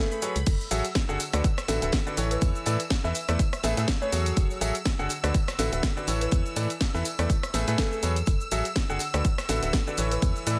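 Energetic and soulful, this piano house passage is driven by a brilliant, up-front grand piano riff and a hollow, organ-like FM bass, both pumping against a punchy, tape-warm electronic kick. A house kit with a cracking snare, crash, rim click and shaker sits alongside a very quiet gated 80s kit with a fat snare and a faint tambourine. In the background, a woody soft-mallet marimba with tape echo carries the melody over shimmering string-machine violin chords that cycle through F#m9, D6, E7sus4 and Amaj9 in a small room ambience.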